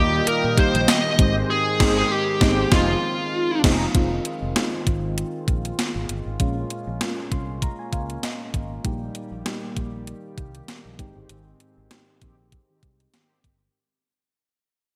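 An excerpt of 1980s-style pop in F minor at 98 BPM, with a lightly swung 16th-note feel and a dramatic, urgent mood. A bright, overdriven lead guitar carries the melody up front with delay, but only for the opening 3.6 seconds, while mellow synth brass stabs, sawtooth-edged and ring-modulated, sit in the background before returning near the end at 12.2 seconds. Underneath, a soft, full-bodied FM electric piano with chorus plays the accompaniment throughout and adds a fill from 7.0 to 8.8 seconds. A smooth, warbling analog pad holds sustained chords, and a round, dark fretless bass gets a lush chorus. A clean 12-bit drum machine with a thumpy kick, snare, hi-hat, tambourine and crash is pushed through overdrive and gated reverb. Band accents land from 1.5 to 3.9 seconds and again from 11.3 to 13.7 seconds, while the harmony moves from Eb through Abmaj7, Fm7, Bbm7 and Eb/Bb before returning to Abmaj7. 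The bright digital production sits in a lush hall reverb, and the piece fades out across its longer second section.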